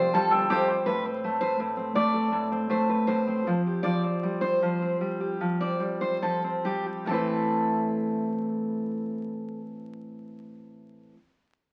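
Acoustic pop in A minor with a reflective, tender mood, moving at around 70-83 BPM in a straight 4/4 and slowing down from 0.9 to 7.1 seconds. The clip opens with a brief grand piano fill, clear and intimate with audible action noise and a long sustain, accompanied briefly by a fat, detuned sawtooth analog bass with a filter sweep that sits in the background and drops out by 0.8 seconds. A full-bodied dreadnought guitar, fingerpicked and up front, carries the accompaniment through to 11.2 seconds, while a second steel-string on a jumbo body picks arpeggios with fresh strings and the odd finger squeak until 9.6 seconds. The harmony drifts between Fsus2 and Amadd9, giving the passage an open, unresolved quality as it moves from one section into the next at 7.1 seconds. A wet studio reverb surrounds the music, and the whole recording is coloured like a very old 78 rpm record, with vinyl crackle throughout.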